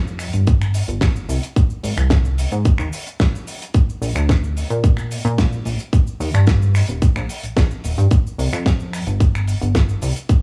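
A glossy, detuned synth bass opens this sensual, groovy nu-disco excerpt, its chorused pulse-wave and sawtooth tone pumping from sidechain compression as it stays up front. A damped 70s kit enters almost at once with a fat snare, hi-hat, cabasa and finger snaps, and a punchy, layered electronic kick lands at 0.5 seconds, both touched by studio reverb. The mix has a gritty hardware character with cassette tape and transformer saturation, and it carries little reverb overall.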